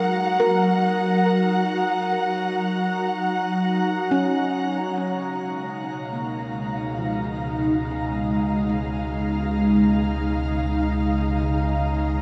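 The recording floats in a deep, wet shimmer reverb with a long tail and a soft, rolled-off top, giving this serene ambient fragment, cut from a longer piece, a warm, unhurried haze in free time. Up front, an ethereal, airy pad holds sustained chords with slow attacks and long releases, its detuned sawtooth and triangle layers thickened by ensemble chorus and a phaser, moving from an F#6 colour to a C#13 at 4.8 seconds. Beneath it, a handpan traces meditative arpeggios in a ringing, nitrided-steel voice with sharp finger strokes and a touch of delay. A dark, woody studio violin section adds bowed texture with vibrato and a smooth top, and both it and the handpan fade in from 4.8 seconds. At 7.0 seconds a deep, rumbling drone arrives on a low C#, its ring-modulated, nasal tone casting an ominous shadow under the otherwise calm, glowing wash.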